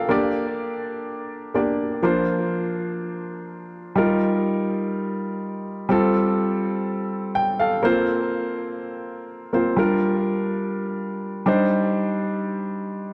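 Set in light reverb, this romantic, nostalgic pop passage, cut from a longer piece, features a clear, polished baby grand piano played solo and up front, its short-sustained tone touched with tape echo as it moves at 124 BPM in Bb major through chords such as Gm, Ebadd9 and Fadd9 before shifting into a new section at 7.8 seconds.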